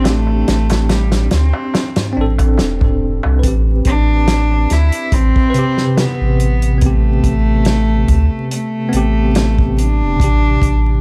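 A distant, reedy cello carries the melody with tape echo over a bell-like tine electric piano with tremolo and 12-bit sampler grit, a round sub bass and a punchy acoustic drum kit in this dark, brooding 71 BPM trip hop cut in A minor with a light swing, while a deep clay darbuka adds a soft-handed layer until 3.4 seconds, all set in a small room with vinyl crackle.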